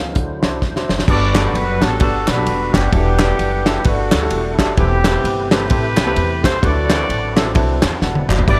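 A mellow, vintage horn section carries the melody up front from 1.1 s in this hopeful, soulful, swung uptempo gospel excerpt, riding over an up-front soul drum kit with a fat snare, tight kick and dark cymbals, a woody, thumpy pizzicato upright bass, a clear baby grand piano in the background, a very quiet, lightly overdriven tonewheel organ holding sustained chords through a slow rotary speaker, and crisp, distant group handclaps, with drum fills at 0.6 s and 8.0 s.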